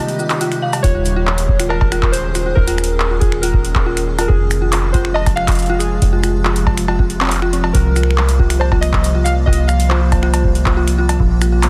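Warbly lo-fi synth keys, an icy, crystalline glass pad with sampler grit and an eerie, inharmonic detuned synth bell open together over a brief break, joined at 0.1 seconds by an electro analog drum machine of metallic hats, cowbell, snaps, claps and shaker, and at 0.8 seconds by a deep, tape-warm electronic kick and a prominent, tube-saturated metallic FM bass, driving this melancholic 139 BPM IDM fragment through Cm, Eb7sus4, Fm and C7sus4 under chorus, tape echo and a dense, heavily limited master.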